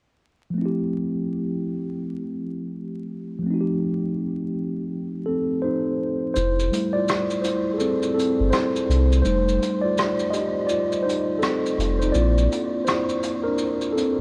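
A mellow tine electric piano, clean, up front and tinged with cassette-tape character, opens this nostalgic lo-fi hip hop excerpt in F major at 83 BPM with swung sixteenths, moving through Fmaj9 and F7 before taking a solo from 6.4 seconds, where a deep, thick, saturated sub bass joins until 12.5 seconds and a brushed vintage kit of hi-hat, rim click and shaker adds soft, rolled-off, 12-bit sampler grit, all drifting toward a closing Bbmaj9#11 in a dreamy mix soaked in huge reverb and vinyl crackle.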